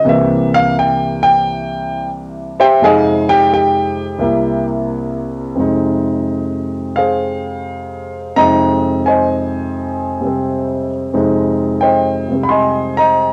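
The excerpt opens on a C7 chord from a solo grand piano, setting a smoky, swinging mood in F minor at 87 BPM in 4/4, with a 68% swing on the eighth notes. The piano sits up front, intimate and natural, its tone carrying a cassette-tape character, and the audible action noise of the instrument adds to the close, homely feel. The harmony moves from C7 to Fm7 at 2.8 seconds, back to C7, and settles on Fm7 again at 5.6 seconds as a new section begins. The playing spans from C2 up to C6, using much of the keyboard's range. Light reverb and a hint of studio ambience surround the instrument, and the tuning sits slightly above standard pitch, at A4 = 444 Hz.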